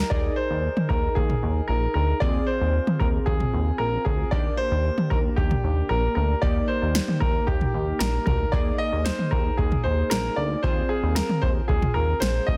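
Synth-pop at 114 BPM with a bright, wistful mood, this excerpt sets a clear, polished baby grand piano melody with tape echo over a funky sawtooth polysynth comp with chorus, a glossy, nasal chorused synth bass, and an up-front analog drum machine whose deep kick, punchy snare and toms carry overdrive, all moving through chords over an Eb pedal in light digital reverb and a dense, heavily limited modern master.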